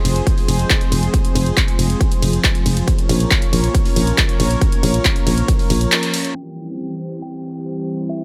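A lush, detuned sawtooth pad and a round, fast-attack FM bass open this euphoric, driving uplifting-trance fragment at 138 BPM in F harmonic minor, both pumping against the sidechain as a punchy layered kick and a tape-warm analog drum machine of handclaps, low-passed hi-hats and ride cymbal land up front in a dark, filtered digital ambience, moving from Fm to Bbm through the drop. After a band accent at 5.9 seconds, the groove falls away and a faint, crystalline FM bell enters at 6.4 seconds, coloured by chorus, phaser and delay over a C chord. A filter sweep and a very quiet downlifter close it out.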